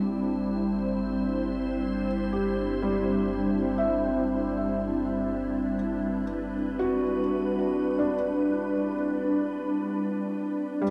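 Ambient and serene, this free-time excerpt sets a dark, detuned organ-like pad with ensemble chorus up front, while a felt-muted upright piano with audible action noise spins intimate arpeggios through delay and shimmer reverb over a rumbling, warbling low drone that fades out by 10.8 s, and a reedy pedal harmonium is barely audible in the final moment at 10.8 s, all bathed in a huge, wet reverberant space.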